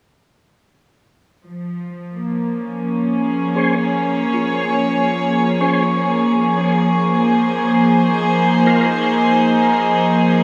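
A 94 BPM pulse in 4/4 with a light swing on the sixteenths underpins this meditative, spacious ambient fragment in B-flat minor, where an up-front string section holds soft-attack, sul tasto chords from 1.5 seconds, moving from Bbm7 to Ab69. A very quiet tonewheel organ adds smooth stabs colored by fast rotary-speaker chorus, while a mellow vibraphone with soft mallets traces ringing, metallic arpeggios from 4.3 to 6.7 seconds in the background, filtered and trailed by dub echo. An enormous reverb with an 8.7-second tail soaks the mix, giving it a dreamy, floating haze.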